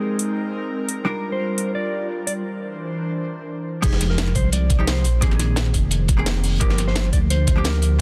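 A soulful, rolling liquid drum and bass excerpt at 173 BPM opens with a clean, fingered electric guitar melody with delay over a dark, compressed hollow-body jazz guitar accompaniment with digital delay and an airy, breathy pad with chorus that holds sustained chords until 3.8 seconds, while a layered drum and bass kit with cracking snare and metallic hats comes in at 0.2 seconds, and at the drop at 3.8 seconds a deep, rumbling detuned saw bass sits up front alongside a knocking electronic kick and a gritty, high-pass-filtered breakbeat kit tucked in the background, all in a dry, dense, heavily limited modern master.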